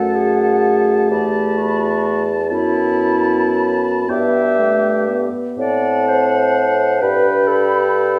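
A wet recital-hall reverb surrounds this slow, yearning romantic movement for wind quintet in E minor: a fragment of about 8.2 seconds in rubato 6/8 at roughly 36-44 BPM, tuned to A4 = 436 Hz. An airy, distant concert flute carries the expressive, tongued melody with vibrato. A clear, close oboe with vibrato sings a second line beside it, while a soft-attacked clarinet and a warm French horn fill in the accompaniment. Beneath them, a mellow bassoon with light vibrato sits up front on the bass, giving the melancholic harmony its grounding.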